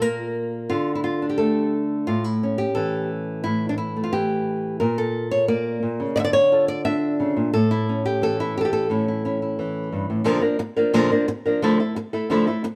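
A brisk, straight 4/4 pulse at 176 BPM drives this intense, passionate flamenco passage, cut from a longer piece and set in A phrygian dominant. A single acoustic flamenco guitar carries everything as the solo voice, fingerpicked and placed up front, with a warm tone that ranges from G2 up to E5. After a brief chordless opening, the harmony moves through D5, A, Bb and Dmadd9 before settling back on A. At 10.3 seconds the music turns to a new section, moving from Bb to Dmadd9 until the guitar stops at 12.7 seconds. A moderate stone-room reverb surrounds the instrument, giving the live performance a resonant, enclosed sense of space.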